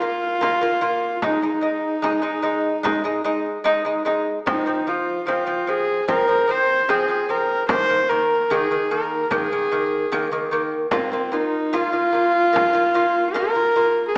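A husky, earthy horsehead fiddle carries a solemn, vast Mongolian folk melody with portamento over delicate fingerpicked arpeggios on a double-strung gut lute, both up front, while a close, dry frame drum joins at 0.2 s, all set in a recital hall's reverb and heard through a small speaker in this short cut from a longer piece.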